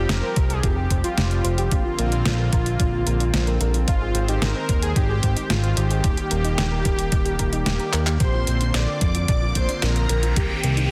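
Nostalgic and driving, this synthwave excerpt moves at 111 BPM in a straight 4/4, cut from a longer piece. A soft, smooth supersaw carries the melody through tape echo, while a brassy, bold analog pad holds sustained chords with chorus and sidechain pumping over a progression that opens on Fsus2 and passes through Bbadd9, Ab and Eb. Underneath, a fat, nasal analog bass sits up front with its own pumping, and a dark, round pluck plays arpeggios in the background, treated with chorus and tape echo. The drums pair a thumpy, overdriven electronic kick with a detuned 8-bit drum machine supplying handclaps, hi-hat and a fat snare, all re-recorded in a small room, and a drum fill at 7.9 s leads into a new section at 8.2 s. There a shimmering, vintage string machine of violins enters with a bright, high second line bathed in ensemble chorus, and an electronic riser builds from 9.4 s to the end, landing on Cm7, all under light reverb in a dense, heavily limited master.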